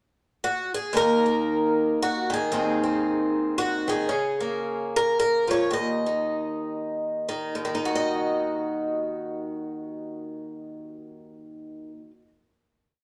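A bright, shimmering twelve-string acoustic guitar sits up front in a moderately reverberant large studio, playing a melancholic, intimate solo folk piece in Eb dorian and swung 3/4 at 88-114 BPM, its sparse fingerpicked, octave-doubled motif melody carrying a boxy tone and audible finger squeak, slowing from 4.1 seconds before settling on a final Ebm chord at 7.6 seconds.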